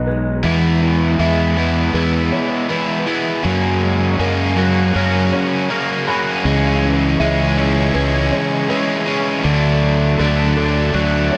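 A dark, roomy large-studio reverb frames this soaring, cinematic post-rock excerpt at 80 BPM in 4/4, a build-up moving through E, F#add9, C#m and D. Up front, a growly fuzz bass and a bright, scooped, double-tracked overdriven guitar riff entering at 0.4 s carry the weight, while a twangy clean guitar plays chorused, delayed arpeggios in the background. Further back, a boxy felt-muted upright piano with audible action noise adds echoing arpeggios, and a very quiet, swirling, detuned sawtooth pad with phaser holds sustained chords.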